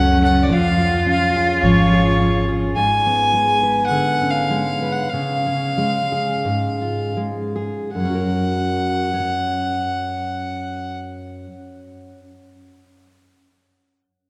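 In a straight 4/4 that slows between 2.8 and 7.9 seconds, this melancholic, haunting acoustic folk piece, cut from a longer work, sets a nasal, reedy fiddle melody up front over a full-bodied fingerpicked dreadnought guitar, with a distant, rich cello line and a thumpy, woody pizzicato upright bass heard only in the opening seconds, all of it bathed in a long church reverb, before the guitar carries on alone after the fiddle stops at 11.0 seconds.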